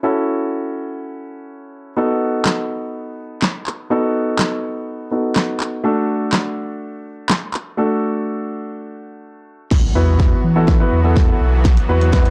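Confident and driving, this dance-pop excerpt at 124 BPM opens on an up-front grand piano alone, with punchy, layered electronic drums (fat snare, handclaps, hi-hat and crash) joining at 2.5 seconds, a break at 7.8 seconds, and a build-up from 9.7 seconds where a lush, detuned supersaw pad pumps in the background, a very quiet riser and impact sit beneath a drum fill, and a deep, round sine sub bass pumps in at 10.0 seconds, all within a dark, warm production with light reverb.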